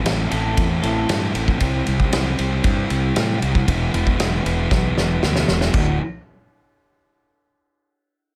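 A thick, distorted fuzz guitar riff opens this anthemic, bittersweet snippet of quiet-loud alternative rock at 116 BPM in 4/4, joined at once by a growly overdriven fingered bass and a roomy, loose indie drum kit with dark cymbals, while a twangy, lo-fi electric guitar through a small old amp plays brief arpeggios with spring reverb and analog delay from 0.3 to 1.2 seconds, all moving through Am, C and E before a drum fill at 4.7 seconds leads into D.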